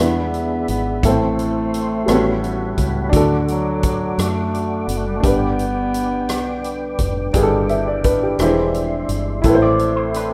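A bright, vintage-toned bass clarinet carries the soulful melody of this slow, hopeful gospel excerpt in 6/8 before dropping out at 7.0 seconds, over a clear, woody upright piano with audible action noise and a foam-muted fingered electric bass. A percussive, flute-like tonewheel organ through a slow rotary speaker and a mellow French horn section in the background hold sustained chords, while a swinging big-band drum kit with a punchy kick, hi-hat and rim click enters at 0.3 seconds. A twangy electric guitar with an envelope filter slips in a second line at 9.6 seconds, all set in a lush hall reverb within a rough home-demo mix.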